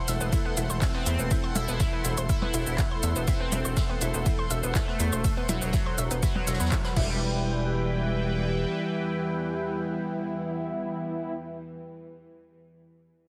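An evolving, airy pad, a round, nasal analog pluck arpeggio and a faint string-like drone open this cinematic, hypnotic melodic techno excerpt in E minor at 122 BPM, soon joined by bold, brassy synth stabs, a gritty, aggressive driven bass and a dry, punchy kick up front, with a layered techno kit of smooth hats, claps, shaker, ride, crash and percussion blips over a distant, roomy brush kit of hi-hat and snare. A juicy, resonant polysynth melody with filter sweeps enters at 0.8 seconds, and the pad, pluck, brass, bass and lead all pump against the kick, with chorus on the pad, pluck, brass and lead, and tape echo or delay on the pluck, brass and lead. After a band accent at 6.7 seconds the drums and pluck drop out around 7.1 seconds, the harmony moves from Am/E to Em, and the pad, drone, brass and lead sustain to the end through a heavily compressed, radio-like sound with light reverb.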